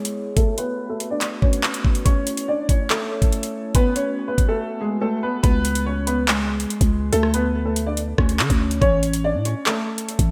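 A worn, dark baby grand piano carries the melody from the opening, its action noise audible and its tone shaded by analog chorus, a low-pass filter and delay, while a glassy, ethereal glass harmonica holds beating chords in the background under a filter sweep. Knocking kick, metallic hi-hats, handclaps and rim clicks from an up-front electronic drill kit with gated reverb set an ominous, menacing half-time feel at 142 BPM in C# phrygian. After a brief break, a growling, buzzy 808-style bass enters at 5.4 seconds as the harmonica stops, all within a lush hall reverb and a bright 1980s-style digital sheen in this excerpt of a longer piece.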